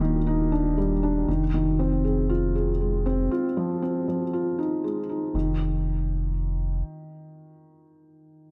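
A straight 4/4 pulse at 118 BPM drives this melancholic, intimate piano-and-strings electronica, cut from a longer piece and opening on a drop over Ebmaj7 before moving to Fm7 and settling on Ebsus2/F. A felt-muted upright piano plays the riff throughout, placed up front and sounding boxy and dark, with thick felt, audible action noise and a tape echo, while a round, deep sine sub bass holds the low end until 6.8 seconds. A moderate scoring-stage reverb and small room ambience surround the sound.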